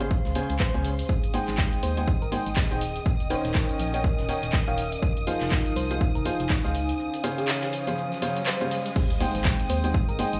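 Joyful and uplifting, this piano house excerpt moves at 122 BPM in Ab major with a swung 16th-note feel, cycling through Dbmaj7, Abmaj7, Eb7 and Fm7 chords. An up-front, bright upright piano with a woody, slightly detuned character plays the riff with analog delay and sidechain pumping, sitting over a hollow, organ-like FM bass that pumps in the same way. A punchy, tape-warm electronic kick drives the groove alongside an analog drum machine of handclaps, hi-hat, cabasa and crash, while a very quiet brushed jazz kit adds hi-hat, shaker and snare, and a faint tambourine plays as well. In the background, a round, keys-like FM synth lead carries the melody with chorus and analog delay, a lush, distant violin section holds sustained chords high above, and a warbling, nostalgic lo-fi pad with chorus and its own reverb pumps beneath. A riser builds from 7.0 seconds into a sub drop and impact at 9.0 seconds, where the music shifts into a new section on Abmaj7. 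The mix has a dry, gritty hardware quality with light reverb and studio ambience.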